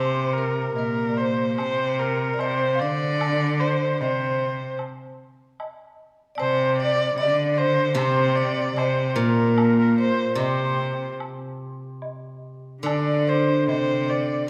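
Chinese traditional music for a chamber ensemble, this tender, graceful excerpt moves at a rubato 75 BPM in 4/4, tuned to A4 = 442 Hz. A vibraphone struck with medium hard mallets carries the melody throughout, its metallic, ringing tone heard close and dry with the motor off. Beneath and beside it, a bowed cello with focused vibrato and an earthy erhu with light vibrato and portamento share a second line, both sitting up front. A steel-string zither played with fingerpicks adds a silvery, bright accompaniment, heard at the opening and returning at 7.9 seconds. A woodblock sits in the background from 0.8 seconds, and a recital hall reverb with an RT60 of 1.5 seconds gives the ensemble a spacious setting.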